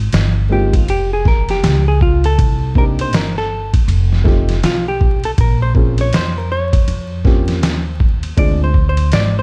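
A woody, pizzicato upright bass opens this smoky, nocturnal jazz-hop excerpt at 80 BPM with a swung 16th-note feel, joined at once by a gritty, pitched-down sampler-style drum kit with a thumpy kick, medium-tuned snare, hi-hat and ride sitting up front. From 0.5 seconds a clean, picked hollow-body electric guitar carries the lead with slapback echo, over a mellow, intimate upright piano whose action noise and short sustain give it a vintage feel, moving through chords such as Cm7, F7 and Bbmadd9. The production is dark and dry, with vinyl crackle.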